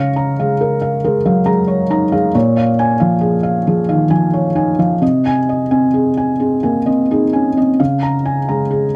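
A dry, close studio sound with a 1970s character puts a felt-muted upright piano up front, its tone soft and dark with the mechanical noise of its action audible. This short cut from a longer neoclassical minimalist piece moves in a slow, rubato 6/8 of roughly 43-47 BPM in Db major, tender and hopeful in mood. The solo piano spans Bb2 to Db7 across nine seconds, moving from Db6 through Bbm7 and Ab/C before settling back on Db6 at 7.8 seconds.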